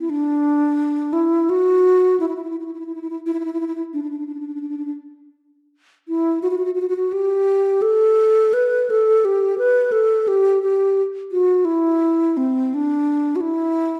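Turkish makam music in 9/8, this longing, soulful fragment features a lone alto flute, airy and hollow, played with vibrato and tongued articulation, close-miked and up front for the full 14 seconds, set in a moderate recital-hall reverb with a dark production.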